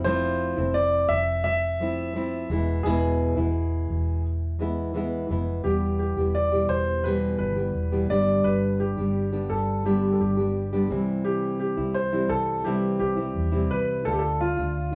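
Acoustic pop at 86 BPM with a heartfelt, sunny mood, this short excerpt sets a woody, intimate upright piano melody with audible action noise up front over thumb-plucked nylon-string guitar and a dark, round, foam-muted vintage electric bass, all three playing throughout in a small room with moderate reverb as the chords move from Fmaj7 and E into a second section built on Em, G, C and Dm.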